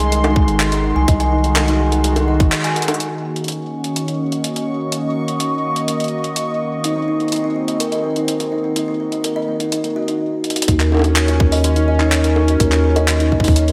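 A dreamy mix soaked in lush hall reverb frames this melancholic, cerebral IDM fragment at 125 BPM in Eb dorian, where a smooth, detuned sawtooth pad holds sustained chords with chorus and sidechain pumping while a woody, hollow kalimba plays airy arpeggios through a diffuse ambient delay. A gritty, pitched-up sampler-style jungle kit of bongos, handclaps and hi-hat runs throughout under tape echo, with a couple of short drum fills, joined in the opening seconds and again from 10.7 s by a tight, up-front electronic kick and a round, deep, wave-folded bass. Between those passages, from 4.0 s, a bubbling, resonant stepped-filter texture with chorus and its own reverb hovers high above as the harmony moves from Ab7 to Ebm7 and finally an Eb7 with its third omitted.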